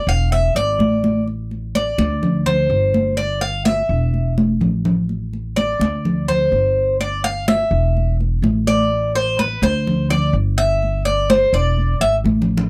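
A picked Cuban tres with metallic double strings, some doubled at the octave, sits up front and solos in arpeggios through this sultry fragment of Cuban son and guajira, moving over chords such as E7, Asus4, Gsus4 and Em7. Beneath it, a dark, growly upright bass with steel strings gives woody, thumpy pizzicato support, while bright, high-tuned congas played with hard hands sound compressed and saturated, breaking into fills at 4.4 and 12.2 seconds. The dry, close 1970s-style studio sound carries only light reverb, giving this cut from a longer piece a warm character.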